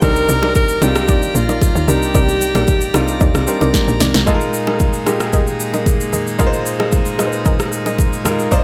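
A straight 4/4 amapiano groove at 113 BPM gives this hypnotic, late-night excerpt its pulse: an overdriven, up-front deep house kit with a deep kick, punchy snare, rim click and shaker sits over a tight, percussive log drum bass that drops out at 4.3 s, while a breathy, whispered alto saxophone with vibrato, scooped notes and tape echo carries an intimate melody until 3.7 s, where a drum fill leads the harmony from Cm9 into Bb7sus4 at 4.3 s, all framed by warm grand piano accompaniment, brilliant full-organ chords pumping under sidechain, soft, round pluck stabs with chorus and tape echo in the background, very quiet acoustic congas and bongos, and a light small-room ambience.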